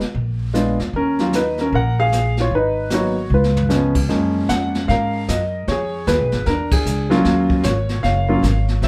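Moody and late-night, this swinging jazz piano trio excerpt sets a woody, up-front pizzicato upright bass and a distant, roomy brush kit with dark cymbals and a boomy kick under an intimate concert grand with audible action noise that enters at 0.5 seconds, with a drum fill at 3.3 seconds and a band accent at 6.7 seconds in a wet, modest studio space.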